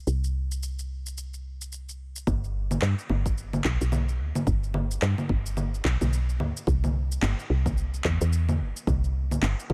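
Dry and hypnotic, this earthy organic downtempo groove at 109 BPM swings its 16ths and opens on a soft, round, woody FM bass up front, its fast attack decaying mellowly, joined from 0.1 seconds by a layered electronic shaker, congas and handclaps with overdrive and small room ambience, before a deep, overdriven electronic kick enters in the background at 2.3 seconds.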